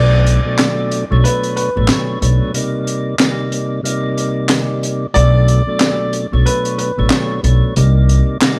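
A swung boom-bap hip-hop groove at 92 BPM in 4/4 rides a crunchy breakbeat kit that enters at 0.3 seconds, its high-tuned snare, handclaps and hi-hat sitting up front with a dark, rolled-off top. This short cut from a longer piece in B minor feels dark and tough, moving between Bm9 and Cm9 chords. A pizzicato upright bass with steel strings carries the low end, woody and prominent in the mix. A percussive tonewheel organ supplies mellow, round accompaniment through a slow rotary speaker and a cassette-tape grit. On top, a slightly detuned upright piano plays a vintage-toned melody treated with analog delay, falling silent at 7.7 seconds. The whole take sounds dry and gritty, set in a small room.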